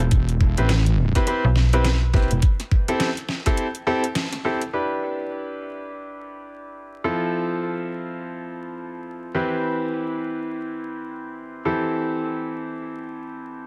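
This glitch hop excerpt struts along at 104 BPM in E phrygian, with swung sixteenths giving it a swaggering, playful bounce. A heavy, saturated wobble bass built from detuned sawtooth and sine tones, thickened with chorus, opens the excerpt beside a knocking electronic kick and a dubstep kit of deep snare and metallic, filtered hats, while a snappy FM slap-style bass adds a brief digital jab. A brilliant grand piano, up front and intimate with audible action noise, punches out stabs that pump against the beat and trail off in dub echo over chords moving from Am7/E through C6, Em7 and Fmaj7. The wobble bass drops out at 2.4 seconds, a break arrives at 3.6 seconds with a band accent at 4.2 seconds, and from 4.7 seconds the piano carries on alone with long sustain. The sound is dry and close, dusted with vinyl crackle.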